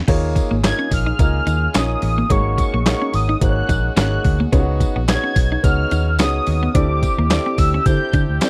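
A swung sixteenth-note groove at 108 BPM in 4/4 drives this short, late-night slice of early-eighties boogie funk in Eb minor. Up front sit a detuned 8-bit drum machine and a dark, round, foam-muted fingered bass. The drum machine sounds sampler-like and tape-warmed, with a thumpy kick, medium-tuned snare, hi-hat, handclaps and crash. A clean, compressed electric guitar riff with analog chorus starts at 0.0 seconds. It is joined by an intimate grand piano with audible action noise, a jingly tambourine in the background, and a distant, roomy brass section holding sustained chords with light vibrato. At 0.7 seconds a velvety, detuned sawtooth synth lead enters high with a smooth, sustained melody coloured by chorus and vibrato. The harmony moves through Eb9sus4, Ab9sus4, Db9sus4 and D9sus4, and the dry, close 1970s-style studio sound gives the groove a slick finish.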